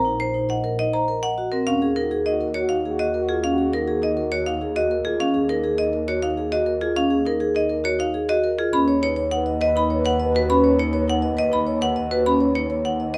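A straight 3/4 pulse at 102 BPM drives this urgent yet meditative minimalist pattern piece in Eb minor, cut from a longer work, where a bright, hard-mallet marimba carries the melody up front over close, ringing vibraphone arpeggios and a lush bowed double bass section with vibrato, while a mellow French horn adds a second line in the background from 1.7 to 5.0 seconds and again from 8.7 to 12.0 seconds, inside a moderate large-studio reverb.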